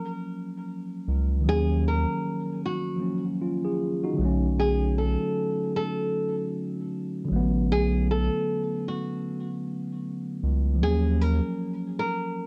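Hazy and melancholic, this short hip hop cut drifts on a swung sixteenth-note feel, with a fingerpicked flamenco guitar carrying the melody over mellow, clean tine electric piano chords, both softened by a low-pass filter. A round, deep analog bass with a fast attack and dark sustain joins at 1.1 s and drops out at 11.4 s, sitting a little louder in the mix. Moderate studio reverb and a cassette tape character wrap the sound as the harmony moves from Ebm9 to Bm9 and back to Ebm9 at 10.8 s.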